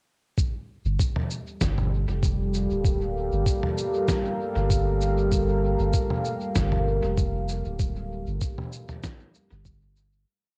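A hazy, tape-softened home cassette recording with little reverb carries a spacious ambient dub piece in G minor at 97 BPM with a slight 16th-note swing, where a soft, slow, thumpy electronic kick from 0.4 seconds and a sparse, muffled, sampler-style kit of cabasa, low tom and medium-tuned snare, its beat echoing with dub delay, are joined by a round, deep sub bass line from 0.8 seconds, before a dark, warbling, detuned sawtooth pad with chorus and its own reverb enters at 1.9 seconds on slowly shifting chords from Gm7, all fading out from 7.0 seconds.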